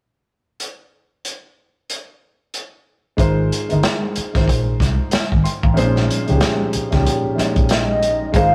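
Over a swung sixteenth-note groove, a crunchy, gritty breakbeat kit opens this soulful, smooth neo-soul R&B fragment alone before a round, foam-muted electric bass and an up-front baby grand piano with short sustain enter at 3.2 seconds on lush extended chords, a hollow, woody clarinet-like synth lead with chorus and vibrato adds a brief melody from 7.7 seconds, and a slightly broken-up guitar through a small old amp touches a single note at the very end, all in a rough rehearsal-room sound with stone-room reverb.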